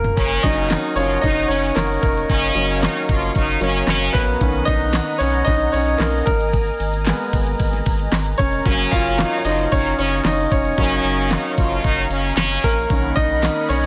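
A polished grand piano leads this hopeful, uplifting piano-driven pop excerpt at 113 BPM in F# major, tuned to A4 = 435 Hz, its long sustain sitting up front over chords moving from F# through Bmaj7 and G#madd9. A layered, electronic-sounding drum kit with knocking kick, fat snare and crisp hats opens on a fill and stays forward beside a round, deep analog bass, while a detuned sawtooth pad with chorus rests mellow in the background. A muted, nasal French horn section adds a brilliant second line from 0.2 to 4.3 seconds and again from 8.7 seconds, a very quiet group handclap runs underneath, and the dense, heavily limited mix carries light reverb.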